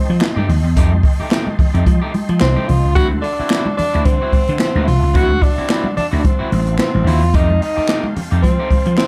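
A strutting funk excerpt opens on a roomy jazz tenor saxophone solo with light vibrato, scooped notes and plate reverb, over a smooth tonewheel organ holding chords in the background through a slow rotary speaker, chorus vibrato and key click, as a growly, amped vintage slap bass, a twangy, picked electric guitar that is slightly broken-up, a swinging big-band kit with a punchy kick, a medium-tuned snare, hi-hat and handclaps, and close, dry, thick-skinned congas join within the first 0.4 seconds, all moving between F9 and D9 in a dark, moderately reverberant club sound.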